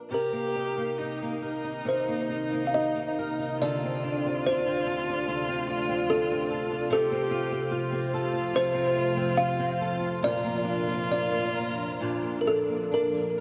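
A dreamy, reverb-soaked sound opens this mournful Celtic slow air excerpt, which moves with a loose, rubato feel full of longing. A woody thumb-plucked kalimba carries the melody through analog delay, while a boxy, up-front fingerpicked acoustic guitar with a swing lilt and ensemble chorus plays the accompaniment, and a smooth bowed viola with vibrato adds a second line from 0.1 seconds. At 1.0 seconds a deep, moody pad of detuned sawtooth and sine tones with a sub octave enters with a slow attack, holding sustained chords beneath the other parts.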